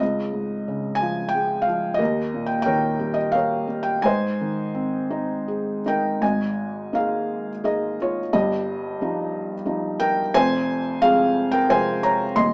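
A felt-muted upright piano plays solo from the first moment, soft and intimate, with audible action noise and an up-front, vintage character set in light reverb and a small-speaker sound. This lyrical classical piece in 3/4 and Ab major feels cool and bittersweet, moving with rubato at 79-92 BPM across a range from Eb1 to C6, over chords such as Dbadd9, Eb7 and Fm. At 6.2 seconds a new section opens on Absus2, and the 12.5-second passage is cut from a longer piece.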